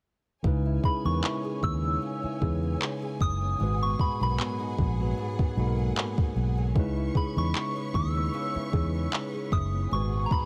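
A longing, moody contemporary R&B excerpt opens at 0.4 s with a mellow tine electric piano, lush bowed symphonic strings with vibrato, a boxy fingerpicked nylon-string guitar with tape echo sitting in the background, a round, foam-muted electric bass and an up-front drum kit of soft kick and handclaps carrying vintage sampler grit, the harmony moving between C#m7 and G#m7 in a digital ambience, before a pure FM synth bell with chorus, phaser and tape echo takes the melody from 0.9 s.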